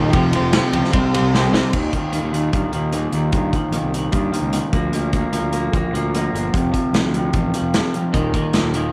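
A twangy, slightly broken-up electric guitar riff through a small old amp sits up front with spring reverb and a cassette-tape grain in this wistful, carefree indie rock passage cut from a longer piece. A clean, compressed twelve-string electric guitar with lush chorus and analog delay also plays a riff alongside a very quiet, buzzy combo organ with heavy vibrato; both drop out at 1.7 seconds, and the twelve-string returns at 8.1 seconds. Underneath, a growly fuzz bass with overdrive and a punchy, up-front rock drum kit with bright cymbals and a tape-worn edge drive the music, with a drum fill marking the shift into the second section, all in a home-cassette booth sound.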